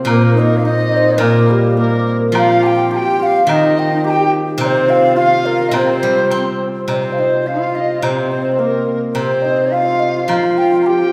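A shimmering hammered dulcimer and a silvery, up-front steel-string zither played with fingerpicks open this graceful, tender excerpt of Chinese traditional chamber music in C yu mode at 105 BPM in a rubato 2/4, joined at 0.1 s by an airy bamboo xiao with vibrato carrying the melody, a pure large dizi with a buzzing membrane, a husky, expressive bowed horsehead fiddle with portamento, and a woodblock, the fiddle and woodblock both set in the background, with the ensemble heard from further back in a reverberant recital hall.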